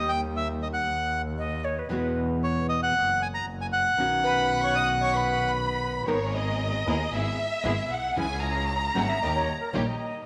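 A reedy, dark bandoneon sings the melody of this nostalgic, elegant tango over fingerpicked nylon-string guitar and a boxy, bowed double bass with vibrato and portamento, as a distant, airy flute with slapback echo slips in at 1.4 seconds, a rich, close violin section enters at 4.2 seconds and carries the solo from 6.1 seconds alongside smooth-topped string stabs, the rubato feel floating in an echo-chamber reverb.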